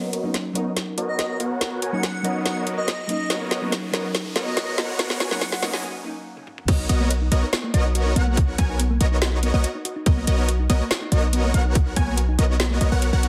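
A boomy, sine-deep 808-style bass and a hard-clipped electronic kick arrive at 6.7 s to launch the drop of this bright, lush future bass excerpt in B major at 142 BPM in half-time, following a build-up where huge detuned supersaw chords under a low-pass filter sweep, a soft round pluck, an airy dreamy lead with vibrato, a background riser and a trap kit of woody snare, metallic hats, crash and tom fills rise toward a break at 5.8 s, after which tine-like thumb-piano-style and punchy wave-folded unison plucks carry echoing arpeggios, the synths and bass pumping under sidechain in a heavily compressed, radio-like mix with a moderate digital room reverb.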